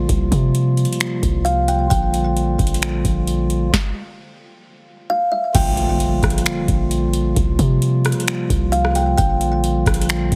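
Dreamy and blissful, this atmospheric cloud-rap excerpt moves at 132 BPM in a half-time feel, with a soft, hollow stopped-flute pipe organ holding up-front sustained chords that pump under sidechain compression, over a deep, boomy 808-style bass and a booming analog drum machine with a crisp snare, metallic hats, finger snaps and rim clicks. A woody, close-miked kalimba plucks brief ringing phrases through a digital delay, first at 1.4 s, while the band drops out in a stop from 3.7 s before a background electronic impact lands at 5.5 s. The whole mix sits in a heavily compressed, radio-like digital ambience.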